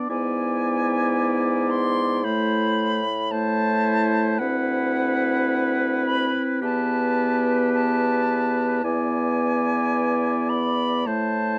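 Classical wind-quintet music in a slow, serene romantic movement at 54 BPM in 4/4 with a rubato feel, in which a pure, expressive silver concert flute carries the tongued, vibrato-laden melody over a smoothly toned oboe second line, a bright clarinet sitting in the background, a mellow, close-miked French horn and a soft-attacked, vintage-tinged bassoon bass, all heard through close, detailed microphones with light reverb as the harmony moves from E7/G# through Am, D13, Em and E7 to settle on Am at 11.1 seconds in this short cut from a longer piece.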